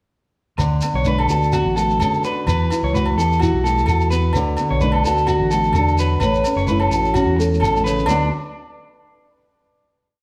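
Everything enters together at 0.6 s in this warm, danceable highlife guitar band piece in D major at 128 BPM with a light swing: a slightly broken-up electric guitar through a small old amp picks an up-front arpeggiated ostinato bathed in spring reverb, a dark, round fingered electric bass plays a syncopated figure, and a small, thumb-plucked nylon-string guitar rolls fingerstyle arpeggios. Ringing agogo bells sound a low bell time line, high-tuned vintage congas keep a pattern in the background, and a grainy, mellow shekere shakes close and dry, all moving through D6, Esus2 and A. The band, playing live in a stone room, gets a drum fill at 7.5 s before landing on a final D chord at 8.1 s that rings out to 9.9 s.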